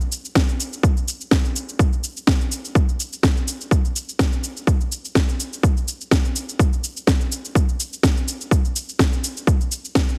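Lightly swung sixteenths drive this groovy, funky house excerpt, where an overdriven electronic shaker and cracking snare with sidechain pumping open the groove before a punchy, layered electronic kick, also overdriven, joins at 0.4 s, both parts sitting up front with the character of a large room, light reverb and a heavily compressed, radio-like sound.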